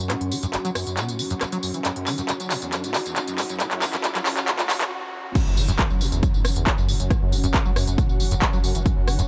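Hypnotic and industrial, this driving peak-time techno cut moves at 137 BPM in a straight 4/4, lifted from a longer piece. A squelchy, resonant sawtooth acid bass riff runs throughout, swept by a filter during the build-up, with lush chorus, digital delay and sidechain pumping, while a deep, moody pad built from detuned unison saws and a sine sub octave sits in the background, carrying chorus and built-in reverb. An eerie, warbling FM drone with a metallic, inharmonic colour hovers behind them until 4.9 seconds, and an up-front, overdriven techno kit of smooth hats, handclaps, rim clicks, tambourine and crash cymbal plays a fill through the build-up. A very quiet riser and swell lead into a brief stop, and at 5.4 seconds the drop lands with an impact, a heavy, layered electronic kick and a thick, tube-saturated sine sub bass on F#1 that pumps against the kick. The mix carries light reverb and a high-pass filter, keeping the groove taut and relentless.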